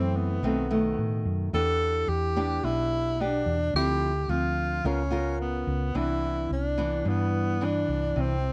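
Recorded close and dry with fine detail, this sophisticated, breezy bossa nova cut from a longer piece moves at 109 BPM in C major, as an up-front mellow tenor saxophone sings the melody in a jazz style with subtone, vibrato and scooped notes over a small, fingerpicked nylon-string guitar and a round, dark, hollow-body short-scale electric bass, drifting through B7b9, Em7, Dm9 and Db6 before settling on Cmaj9 at 6.0 seconds.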